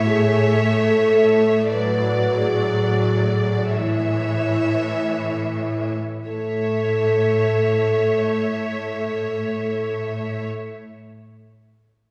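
Heard from further back in a concert hall with a wet, 1.8-second reverb, this short passage from a serene, lyrical romantic movement for symphony orchestra unfolds in A major and 6/8, with rubato at 21-38 dotted-quarter beats per minute, slowing over its first 6.3 seconds. Two lush violin sections with expressive vibrato and a soft attack carry the melody and a second line between C#5 and E5, while a smooth viola section supplies accompaniment, a mellow French horn section holds sustained chords, and a focused cello section anchors the bass on A2. The harmony moves from A to E7 over A at 1.7 seconds and returns to A as a new section begins at 6.3 seconds.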